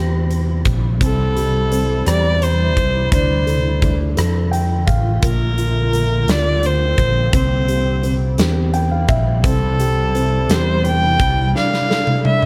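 A heartfelt, tender six-eight pop ballad excerpt in a small room, where a dark, mellow concert grand piano adds brief fills beneath a rich, focused, bowed violin melody entering at 1.0 seconds, a round, amped fretless electric bass with lush chorus sits up front, a granular cloud pad drifts in the background with bright, blurred sustained chords and built-in reverb, and a huge arena drum kit with a punchy kick and medium-tuned snare closes on a fill at 11.5 seconds.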